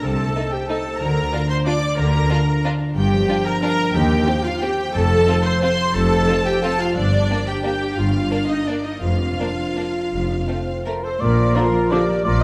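A festive, sweeping classical passage in 3/4 and Bb major opens with a clear, distant violin section singing a lush vibrato melody over smooth violas, ringing thumb-plucked harp arpeggios and an even bass of cellos and double basses, while a focused second violin line sits in the background. The tempo flows with rubato between 157 and 196 BPM in a wet scoring-stage reverb. At 10.9 seconds airy flutes and a dark, punchy cor anglais add second lines, joined by a present clarinet, then barely audible trombones at 11.5 seconds and very quiet French horns at 11.6 seconds hold sustained chords.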